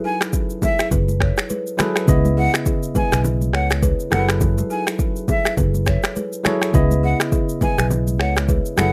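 A lightly swung sixteenth-note groove in 4/4 drives this mellow, sultry afrobeats fragment, cut from a longer piece, with an electronic, produced drum kit of finger snaps, rim click, shaker and a deep kick sitting up front from 0.2 seconds. Congas join at 0.6 seconds, their thin, damped skins heard close and dry in the background, and a round, dark, amped fingered electric bass arrives up front at 0.9 seconds. A bell-like tine electric piano lays down clean, direct accompaniment over minor eleventh and ninth chords, while a woody kalimba with a hollow-box thumb pluck rings out a repeating riff through digital delay. On top, a breathy jazz flute carries a high melody with vibrato, a crisp chiff on its attack, and its own touch of digital delay. The sound is dry and close, with the rough, unpolished feel of a home demo mix.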